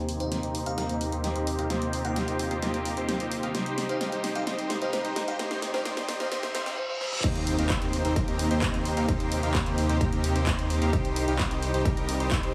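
This anthemic, powerful festival progressive house track at 130 BPM opens on a filtered build-up. Dark, reedy chamber strings hold sustained chords in the background, a huge, bright supersaw riff sits up front with dub echo, and a thick detuned saw bass adds chorus, all three pumping with the sidechain. Meanwhile a bell-like FM electric piano sparkles a melody through chorus, phaser and echo, and a big-room kit with a huge snare, claps, hi-hat and crash plays a drum fill. A faint riser and reverse cymbal lead into the drop at 7.2 seconds, where a punchy, layered electronic kick enters, a faint impact lands and the piano stops, while the chords shift between Eb6 and Cm under light reverb and digital ambience.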